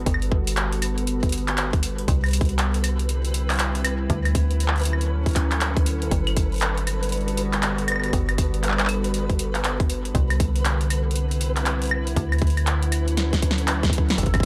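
A swung sixteenth-note feel in 4/4 drives this playful, wistful IDM excerpt. An overdriven electronic kick sits up front beside an analog drum machine of claves, handclaps, a punchy snare and metallic hi-hats with a tape-warm tint, and a drum fill runs from 13.2 to 14.2 seconds. Beneath them, a mellow, digital FM bass plays decaying notes with a fast attack and a tube-saturated edge. A glassy, ethereal FM pad holds sustained chords through ensemble chorus and its own reverb, moving between Gmaj9, Cmaj9 and Dmaj9, while a grainy, flickering granular texture sits in the background with sidechain pumping. A velvety synth lead with chorus and vibrato arrives only at 14.2 seconds on a single high note as the clip closes, and the overall sound is dry and gritty, like a hardware recording.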